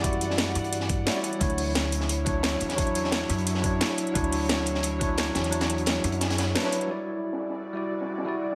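A bell-like tine electric piano with dub echo carries this dreamy, lush liquid drum and bass excerpt at 175 BPM in E dorian, moving between Em9 and Dmaj9 over a breathy, chorused, pumping pad in the background, a woody pizzicato upright bass that plays until 6.5 seconds, a gritty, thumpy electronic kick, an up-front layered kit with cracking snare and metallic hats, and a dark, filtered, saturated breakbeat kit, with a band accent at 6.6 seconds before a brief new section at 6.9 seconds returns to Em9 in light studio reverb.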